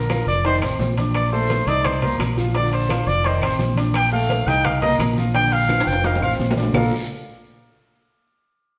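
Heard in a stone room's live reverb, this lively, sunny Afro-Cuban jazz excerpt in Bb major at 172 BPM puts a mellow, scooped trumpet solo up front over an intimate concert grand piano with audible action noise, a round, punchy fingered electric bass, ringing metal-shell timbales, soft-handed congas and bongos, woody claves and a raspy guiro, with a drum fill from 5.7 seconds before the trumpet stops at 6.3 seconds.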